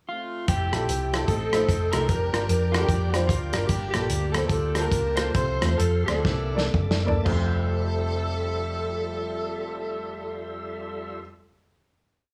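Uplifting and hopeful, this short uptempo gospel piece in F major swings at 112-150 BPM as a tight, dark saxophone section and a slightly broken-up electric slide guitar carry call-phrase melodies over a reedy tonewheel organ pad with slow rotary speaker, a very quiet mellow French horn section, off-beat chords from a woody, slightly detuned upright piano, a round walking bass with slides, and a muffled, up-front soul drum kit driving a two-beat praise groove, before the tempo slows from 3.7 seconds and a drum fill at 6.3 seconds leads into a held Fmaj9 final chord at 7.3 seconds.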